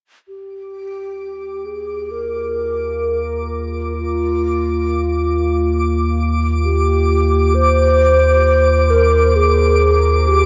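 Steeped in a dark, cavernous reverb, this serene, weightless ambient excerpt drifts in free time over an Ebadd9 chord, its alto flute and sub bass entering at 0.3 seconds and all four parts gradually fading in across the excerpt. Up front, the breathy, hollow alto flute carries a straight-toned melody between F4 and C5, haloed by shimmer reverb and diffuse delay, while a deep, round sine sub bass holds Eb2 beneath it. A twinkling, sparkling granular layer with its own shimmer appears around D6 at 1.2 seconds, and a warbling, vintage analog drone with chorus settles in at 2.4 seconds.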